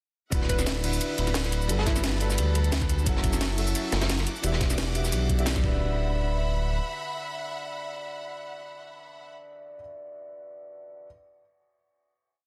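A smooth, gliding sawtooth synth bass carries this dreamy, lush liquid drum and bass piece in D major at 175 BPM, under a thumpy electronic kick, a crunchy looped breakbeat with dark cymbals, an overdriven kit with cracking snare, bright hats and cabasa, a clear concert grand piano with tape echo and spread, held chords, a rich bowed string pad with sidechain pumping, and a very quiet, hollow square-wave pluck. The drums drop out around 5.6 seconds, leaving bass, piano and strings for the final hit.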